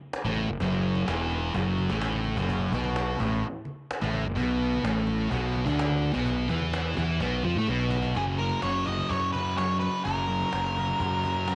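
A straight 4/4 groove from a woody, distant cajon and very quiet, low-tuned congas carries this hazy, hypnotic psychedelic rock fragment, where a thick, double-tracked fuzz guitar riff with phaser and an overdriven fingered bass sit up front over suspended chords in light reverb, until a drum fill at 7.7 seconds leads to a dark octave-fuzz lead guitar melody with slapback echo entering at 8.2 seconds.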